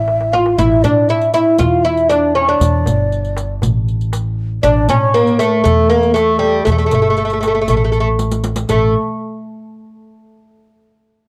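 Hypnotic and soulful, this short cut from a longer Arabic maqam ensemble piece moves in a straight 4/4 with a dry, intimate sound, captured as a home recording on cassette. The acoustic oud carries the melody up front, its fretless double strings plectrum-plucked with a woody tone and a cassette-tape coloring. Behind it, an end-blown reed-cane ney traces a breathy, mellow, hollow second line with vibrato, sitting higher and further back. A pizzicato upright bass on steel strings gives a dark, thumpy low end, roughened by transformer saturation. A metal-shell darbuka, played softly with the hands, enters at 0.1 seconds with a short fill, and the riq's bright jingles join at 0.6 seconds. The darbuka is crisp, close and kept in the background, and another fill at 8.2 seconds leads into a new section near the close.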